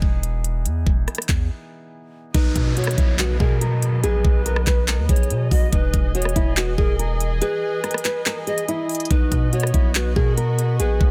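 Triumphant yet wistful, this half-time trap hip hop excerpt at 142 BPM in B major opens with a soft, felt-muted upright piano with audible action noise over a deep, mellow 808-style bass and an up-front trap kit of knocking kick, crisp hats, handclaps and rim clicks; then at 2.3 s a thumb-plucked nylon-string guitar takes the melody through digital delay, a pure pan flute with chiff and vibrato adds a delayed second line, a sul tasto chamber string section holds intimate sustained chords, and an electronic downlifter sounds until 5.7 s, set in a small room with a dense, heavily limited modern master.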